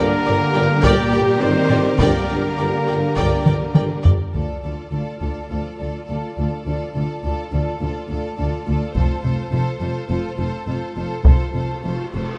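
A straight 4/4 pulse at 104 BPM drives this dark, relentless cinematic excerpt in D phrygian, where an up-front, close and dry taiko ensemble pounds with heavy sticks from 0.8 s and breaks into a fill before the music shifts from G minor to D minor at 4.3 s. Lush, vibrato-laden violin sections carry the melody and a clear second line over an expressive viola accompaniment and a smooth, even bed of cellos and double basses, while a background string section, a dark, distant French horn section, a very quiet trombone section and a punchy tuba hold sustained chords and bass, and a roomy solo trumpet adds stabs, with the trumpet, trombones, tuba and that background string section dropping out after roughly 4 seconds. A huge, shadowy cymbal swell rises in the background at 11.8 s, and the whole piece sits in a moderate scoring-stage reverb.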